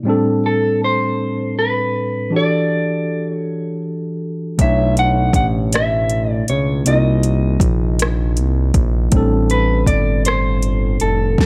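A worn, slightly out-of-tune tine electric piano opens this slow, late-night R&B passage in 6/8 at 53 BPM, its clean tone sounding as if heard through built-in speakers. At 0.5 seconds a dark, fingered electric guitar enters with a yearning melody, a slapback echo trailing its mellow voice. At 4.6 seconds a gliding synth bass joins, sawtooth and square-wave in character with a fast attack and sustained portamento notes. An electronic drum kit arrives at the same moment, with a soft kick, fat snare, rim click and metallic hi-hats, all pushed through overdrive and sitting slightly louder than the other parts. The harmony moves through Am11, Em11, Bm11 and Cm7 before settling on Am7. The mix is dry and close, with every part placed up front in this short cut from a longer piece.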